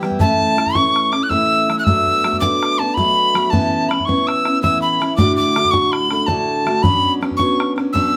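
A driving 9/8 slip jig at 109 BPM, this dark yet lively Celtic folk passage, cut from a longer piece, sets an airy, chiffy, unsteady wooden whistle up front with vibrato and tongued notes over a bright picked steel-string acoustic guitar moving through A, Bm7, Aadd9, D and Bmadd9, and a boomy, open bodhran heard close and dry, the trio playing live in one room with moderate studio reverb.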